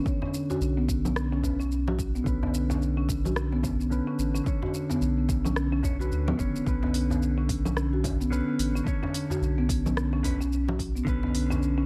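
A round, dark analog bass sits up front from 0.6 s, anchoring this mystical, hypnotic organic downtempo piece at 109 BPM in B minor, swung on the 16ths over a Bmadd9 chord. Woody, soft-mallet marimba arpeggios and a clean, compressed, picked electric guitar both move through filter sweeps and digital delay, with sidechain pumping on the guitar. A deep electronic kick, a smooth-hatted deep house kit with congas, rim click and shaker, and a large, clay-shelled darbuka struck with hard hands fill out the groove, all framed by light reverb and digital ambience.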